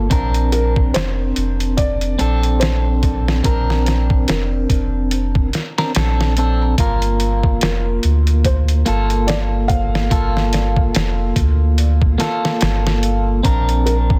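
A swung sixteenth-note trip hop groove from a pitched-down, gritty sampler-style kit with a thumpy kick and softly clipped snare anchors this hypnotic, smoky excerpt, as a deep, round dub sub bass sits up front beside a clean, picked electric guitar treated with harmonic tremolo and tape echo, while a mellow felt-muted upright piano melody, with audible action noise, 12-bit sampler grit and dub echo, sits in the background over chords moving from Bbmaj7 to Gm7.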